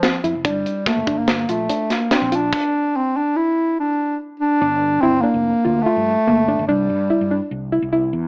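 A dark bass clarinet carries the brooding melody up front in this excerpt of progressive band music in an uneven 5/4, with a soft, round synth pluck spinning chorused arpeggios and a fretless electric bass adding an amped, rounded low end. A tight metal drum kit with bright cymbals and a tight kick drives only the opening, falling away at 2.6 s, and a new section arrives at 4.6 s. The whole piece sits in a small room with the thin, boxy colour of an AM radio.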